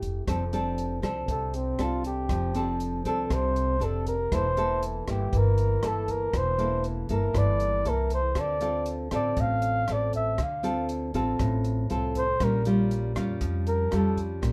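A straight 4/4 bossa nova groove at 119 BPM in F major, relaxed and sunny, rides on an up-front, fingerpicked nylon-string guitar with fresh strings, a woody, growly pizzicato upright bass and a dark, tight compact cocktail kit of hi-hat, kick and rim click in a small room, while a breathy, mellow flugelhorn enters at 1.3 s for a jazz-style solo full of vibrato, scooped notes and soft attacks, the light reverb framing harmony that moves from F6 through C13/E and Dm7 to Bbm6 in this excerpt from a longer piece.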